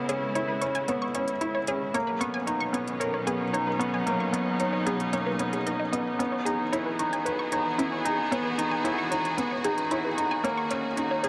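Piano and strings electronica at 113 BPM, this hypnotic, cinematic excerpt opens with a felt-muted upright piano playing an intimate, mellow riff through digital delay, its action noise audible and its short notes up front, over smooth, vibrato-rich sustained chords from a studio string section. A punchy, detuned sawtooth pluck spins arpeggios through its own digital delay, while a crisp, tape-toned electronic hi-hat enters at 0.1 s. The chords move from C#m7 through Bmaj7 and Emaj7 to D#m7, all set in a huge ambient reverb.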